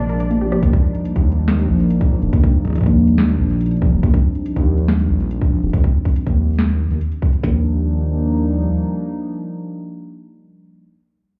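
A glitchy electronic drum kit sits up front, with a tight kick, tiny snare and clicky hats that sound re-recorded in a small room, arriving at 0.6 seconds in this wistful IDM fragment at 141 BPM in Eb major. Before it, a short break opens on a Bb9 chord, where a warbly, dusty pluck plays lo-fi arpeggios through chorus and tape echo, then falls away as the harmony settles on Ebmaj9. Underneath, a dark detuned saw bass rumbles and beats with a deep, saturated unison tone, holding until about 8.7 seconds. A booming analog drum machine adds a tonal snare, rim click and metallic hats, while a hollow, flute-like soft pad sustains chords through chorus and carries a filter sweep until 7.4 seconds, when the music moves into a new section. The whole mix is heard muffled as if through a wall, with club reverb and a dull top end that deepens the wistful mood.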